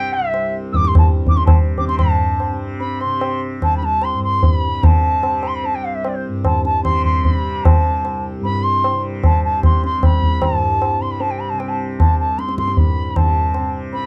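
Hindustani classical music in a radiant, serene mood, this piece moves at 150 BPM in 7/4 with a straight feel and gradually speeds up across its 14.1 seconds, cut from a longer performance. A bright, reedy bamboo bansuri carries the melody from the first moment, its pure tone marked by vibrato and tongued notes, sitting up front yet with a slightly distant air. Beneath it, a tanpura sustains a softly plucked, buzzing drone with a shimmering, acoustic glow, holding the low register throughout. The low-tuned tabla joins at 0.3 seconds, its short ring and small-room character placed close and prominent, and it is the loudest of the three parts. The sound is dry and intimate, a close 1970s-style studio recording touched by light reverb, with a brief opening passage giving way to a longer second section at 2.0 seconds.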